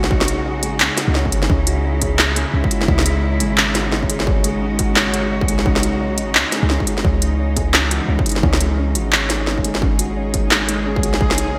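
This tense, spacious half-time drum and bass excerpt at 173 BPM in C# minor opens on a C#madd9 chord, with a rich, bowed cello section holding sustained chords that pump against the beat, while a soft, felt-muted upright piano plays intimate, boxy arpeggios through a digital delay. Underneath, a long, deep 808-style sine bass sits beneath a distorted electronic kick and an up-front industrial kit of clanging snare, handclaps and smooth hi-hats, the kit's gated reverb and large-room character framing a groove with a swung, half-time weight. A lush hall reverb and bright 1980s-style digital sheen wrap the whole 11.6-second passage.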